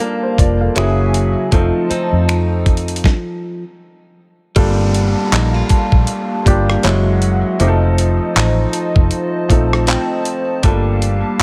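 A dusty, sampler-style soul drum kit stands out in this moody, longing contemporary R&B excerpt in G minor, its thumpy kick, medium-tuned snare, rim click, hi-hat, handclaps and finger snaps sitting gritty and compressed up front at 79 BPM with a 16th-note swing. Entering with the drums at 0.4 seconds, a vintage foam-muted fingered electric bass adds a dark, round, amped low end, while a worn baby grand piano with long sustain carries the accompaniment. A hollow, flute-like pad holds soft chords treated with chorus, tremolo and sidechain pumping, and a bright, clean direct-recorded electric guitar picks arpeggios. A delicate, bell-like celesta glints very quietly in the upper register, and an electronic downlifter drifts in the background from 4.6 seconds, as the second section begins. The harmony cycles through Gm9, F#9 and F7, and a stop around 3.0 seconds breaks the groove before the second section, all captured with little reverb.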